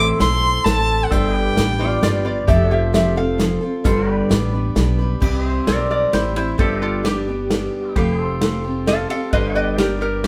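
Honky-tonk and classic country in 3/4 at 131 BPM, this short excerpt carries a sunny, heartfelt mood, played by a band live in one room with moderate studio reverb. A dark, woody fiddle with light vibrato opens the melody up front but drops out at 2.2 s, while a bright, full-bodied picked steel-string acoustic guitar and a pizzicato upright bass with a woody tone hold down the accompaniment throughout. A twangy, compressed pedal steel guitar sits low in the mix with sustained chords and volume swells, and a natural country drum kit with a punchy kick and medium-tuned snare joins at 0.2 s, using crash, ride and hi-hat. From 1.8 s a nasal, metallic lap resonator guitar played with fingerpicks adds a second line, then takes a solo with a steel bar from 5.2 s to the end. The harmony moves from Am and G through F and back to G, then opens onto C, G and Fadd9 before landing on G as the piece cuts off.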